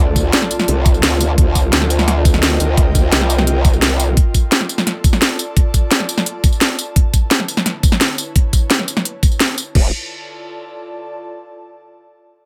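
A growling, saturated bass and an airy, breathy pad with sidechain pumping open this tense, mechanical excerpt of dark technical drum and bass at 172 BPM, where an up-front electronic kit with a knocking kick, cracking snare, crisp hats, crash and tambourine drives from 0.2 to 9.8 seconds over a dry mix, as the harmony shifts from Dm to Aadd9/D and back to Dm, before the pad carries on to 11.1 seconds after a brief return of the bass at 9.8 seconds.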